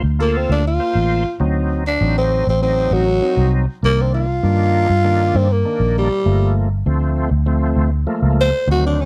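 Straight-eighth soul blues in G minor at 99 BPM, this mournful excerpt from a longer piece features a growling tenor saxophone soloing up front from 0.2 seconds, its breathy, raspy tone full of scooped notes in a jazz style. Beneath it, a reedy tonewheel organ with key click, light overdrive, chorus vibrato and a slow rotary speaker comps through Gm7, D7b9 and Cm7, while a dark, round, foam-muted electric bass holds the low end close and present. The dry room adds little reverb, keeping the soulful playing intimate.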